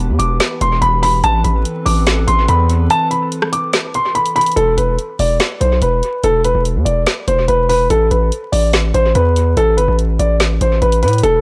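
A hollow, flute-like pad and a distorted 808-style bass open this menacing trap cut together, the pad's soft sustained chords sitting quietly behind the bass's heavy, aggressive, up-front growl. A dark concert grand piano carries the melody almost at once, mellow and intimate, with audible action noise, long sustain and a filtered tone smeared by dub echo. The electronic drum kit rides a half-time feel, pairing a woody snare and rim clicks with bright hats that also trail off into echo. The kick falls away between 2.9 and 4.6 seconds, and the pad drops out at 4.5 seconds, leaving bass, piano and drums to push the hard-hitting second section as the chords move from Em and Amadd9 to E5 and Asus2. The mix is dry of reverb but thick with echo, and a layer of vinyl crackle runs through the whole recording.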